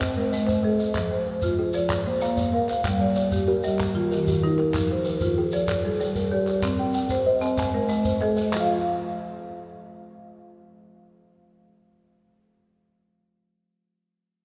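Kalimba, marimba, shekere and group handclaps open together in this hypnotic, rippling excerpt of southern African traditional music at 127 BPM in 12/8, where a mellow, fingertip-plucked kalimba and an up-front rosewood marimba struck with medium hard mallets weave interlocking mbira-style arpeggios through a chord cycle that begins on Ab and reaches Ebsus2/F at 8.5 s, while a grainy, distant shekere and crisp, dry handclaps sound until 8.7 s, the whole piece set in a long, wet church reverb.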